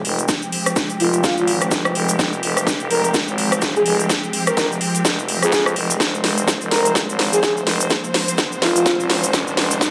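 Swung sixteenths drive this gritty, bouncy bass house build-up, cut from a longer piece, with an up-front, overdriven house kit of cracking snare, metallic hats and rim clicks playing a fill throughout. A punchy kick sits further back, and grainy cabasa joins at 0.2 s. A growling, thick FM bass and lush bowed strings under a filter sweep both pump against the beat, while a breathy, flute-like synth lead with chorus and tape echo carries the melody from 1.0 s to 9.1 s, and a background riser comes in at 7.2 s, all in light reverb.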